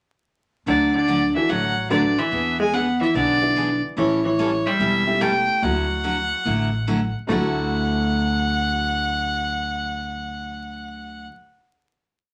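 A snug, reverberant small room and a layer of vinyl crackle frame this short, playful western swing piece in D major, swinging at 145 BPM in 4/4. From 0.7 seconds a clear, intense fiddle sits up front with light vibrato and a smooth top, bowing a motif-based melody built from song-like phrases. Beneath it, a dark, clean, compressed hollow-body electric jazz guitar picks a harmony line mostly in sixths, while a bright, full-bodied dreadnought acoustic picks a steady four-to-the-bar rhythm and a woody pizzicato upright bass plays a two-beat pattern of roots and fifths. A warm, boxy upright piano with short sustain joins in the background at 1.4 seconds, comping in syncopated close voicings. The progression moves from D through E7 and A7 to Dadd9, and the band settles on a final chord from 7.3 seconds.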